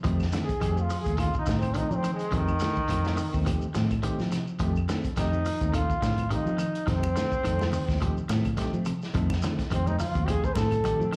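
This hypnotic, funky afrobeat excerpt opens on a single F7 groove: a barky, reedy electric piano with light overdrive, fast tremolo and slapback echo, while a clean electric guitar picks bright, scooped arpeggios and a semi-hollow guitar adds dark, hollow-body stabs, both guitars tucked into the background. Underneath, a fingered electric bass sits prominently with a round, foam-muted tone, joined by a grainy, mellow shekere, a muffled lo-fi vintage drum kit with a tight kick and medium-tuned snare, and faint, woody claves, all moving with a lightly swung sixteenth-note feel. From 0.4 seconds a brilliant trombone takes the solo and stays up front, punchy and full of vibrato yet carrying a distant, roomy quality. At 6.9 seconds congas with a thick-skinned, close and dry sound slip in behind the groove. The whole performance comes across as a live gig heard through the venue's PA, with the feel of a club around it.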